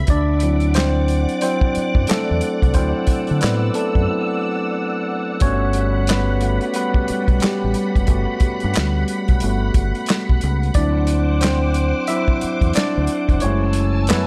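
A light reverb frames this close, late-night slice of neo-soul R&B, cut from a longer piece, its sultry groove leaning on a swung sixteenth-note feel. The tine electric piano plays a solo throughout, its clean tone coming through its built-in speakers and sitting up front over chords that move from D7 to Gmaj7, back to D7, and finally to F#m9. Beneath it, a deep dub fingered bass sounds dark and round, direct and amped, while a soul drum kit of kick, medium-tuned snare, hi-hat and handclaps has a gritty, saturated character with a rolled-off top and a pumping room feel. A soft string machine holds silky, warbling chords in the background, its slow-attack pulse and sawtooth tones softened by ensemble chorus into a mellow vintage haze. A break arrives at 4.1 seconds, and the kick drops out from 13.4 seconds as the F#m9 chord closes the passage.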